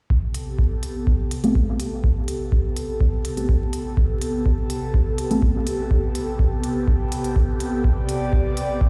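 Dub techno in a hazy, deep mood, cut from a longer piece, where an up-front, tape-warm analog kick and smooth, layered hi-hats drive alongside an airy, breathy pad of sustained Am9 chords that pumps with sidechain and shimmers through chorus, phaser and a filter sweep, while a dark, warbling chord stab enters at 1.4 s and plays until 5.4 s, trailing dub echo and its own filter sweep, all heard as if on a big sound system in a bare room, with large studio reverb and vinyl crackle.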